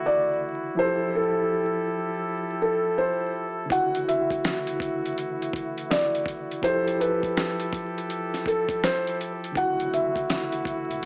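Dreamy and mellow, this excerpt of lo-fi hip hop moves at 82 BPM with a swung 16th-note feel, as a soft, felt-muted upright piano carries the intimate melody over a tine electric piano with cassette-tape colour and a brass ensemble holding sustained chords with light vibrato, all drifting between Dmaj9 and Fmaj9. A muffled, compressed sampler-style drum kit with a thumpy kick, medium-tuned snare and hi-hat enters at 3.7 seconds, and a deep, saturated sine sub bass slips in quietly in the background at 9.6 seconds. The sound sits in a moderate spring reverb with vinyl crackle and an AM-radio tint.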